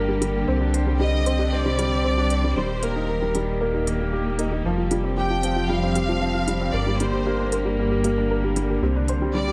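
A dark, intimate mix set in a small echo-chamber room carries this hypnotic piano and strings electronica excerpt at 115 BPM, where a felt-muted upright piano with audible action noise plays a delayed riff over a rumbling, detuned saw bass and sustained chords from a rich studio string section, while a soft round pluck adds chorused, delayed arpeggios in the background, a crisp overdriven electronic hi-hat enters at 0.2 seconds, and a clear, distant violin section carries the melody from 1.0 seconds over a Csus2, Eb, Fsus2, Gm progression.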